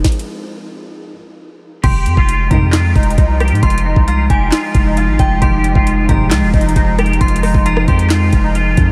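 A dreamy, reverb-soaked mix hangs a long, cavernous tail over this eerie, menacing trap cut, heard in a half-time feel and taken from a longer piece. It opens on a break, with a boxy concert grand piano murmuring in the background until 1.2 seconds, while an airy, breathy, warbling vintage pad washed in chorus holds a sustained Fm7 and a deep, sine-toned 808-style bass rings out long. An electronic trap kit sits up front and overdriven, pairing a knocking kick and sharp snare with metallic hi-hats, handclaps, rim clicks and crash cymbals. At 1.8 seconds a clean, compressed, twangy electric guitar takes the melody through an ensemble chorus, while a crystalline FM synth bell adds a second line high above, smeared by chorus and delay. A very quiet, woody string section, bowed with vibrato, adds low stabs in two short bursts, the second at 5.4 seconds.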